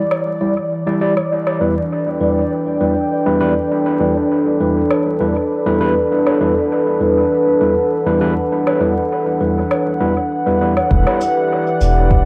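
A smooth, warbling analog pad opens at 0.0 s under a filter sweep, holding Em7 then G6/E alongside a mellow, bubbling stepped-filter texture in the background, muffled, pitched-down woodblock and shaker, and barky, gritty overdriven tine electric piano stabs, the percussion and piano both carrying dub echo, until a round sine sub bass and a soft, tape-softened electronic kick arrive at 10.9 s, all in a meditative, spacious ambient dub fragment at 100 BPM with light reverb, a cassette home-recording character and vinyl crackle.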